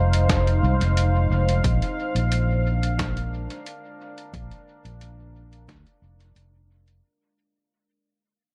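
Ambient dub with a spacious, hazy mood, cut from a longer piece and fading out across its full seven seconds over a move from Fm7 to Bb7. A growly, amped fingered electric bass sits up front beneath a deep, moody pad of detuned sawtooth and sine layers with a sub octave, slow attack, long release, chorus and built-in reverb. A muffled, pitched-down sampler-style kit of hi-hat and snare, tape-warm and treated with dub echo, enters at 0.1 seconds, while a punchy, overdriven electronic kick sits in the background from 0.3 to 5.8 seconds, inside an echo-heavy mix marked by lossy compression artefacts.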